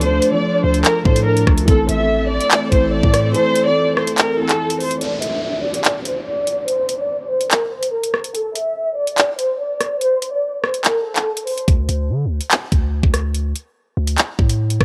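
A half-time drill groove of knocking kick, metallic hi-hats, handclaps and rim clicks drives this menacing, dark hip hop excerpt with a cassette-worn, home-recorded feel, as a lush, expressive violin section carries the melody with vibrato and portamento over boxy, intimate piano accompaniment, a breathy background pad and a deep, decaying 808 bass, before piano and pad drop out at 5.0 seconds for an electronic downlifter and a break led by the violins, and the 808 returns at 11.7 seconds.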